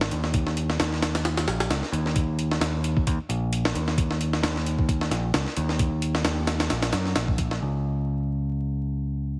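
A gritty, swaggering breakbeat groove at 132 BPM, swung on the sixteenths, opens with a pitched-up, sampler-style drum kit, with its thumpy kick, high-tuned snare and hi-hat in studio reverb, alongside an up-front, direct picked electric bass with tube saturation, all squeezed into a heavily compressed radio-like sound with vinyl crackle and light reverb, until the drums drop out at 7.6 seconds and the bass carries on alone to the cut at 9.4 seconds.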